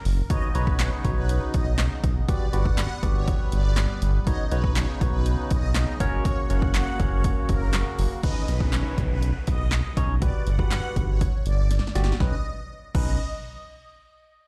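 This summery, upbeat dance-pop excerpt in B major opens at 0.1 s with a punchy analog drum machine, dry and overdriven, its kick, snare, hi-hat, handclaps and crash sitting up front alongside a round, deep analog bass that pumps with sidechain compression. At 121 BPM in a straight 4/4, the opening drop brings in a lush, detuned supersaw pad carrying the melody through a phaser and dub echo. A barky tine electric piano adds bright, clean accompaniment, also phased and pumping. A reedy, sweet accordion with light tremolo tuning holds sustained chords in the background until 8.2 s, while a crisp, very quiet group handclap adds a human touch. As the accordion drops out, an electronic downlifter sweeps in, and a drum fill leads back to Badd9 at 12.2 s, all heard as if played on a big sound system in a bare room with large studio reverb.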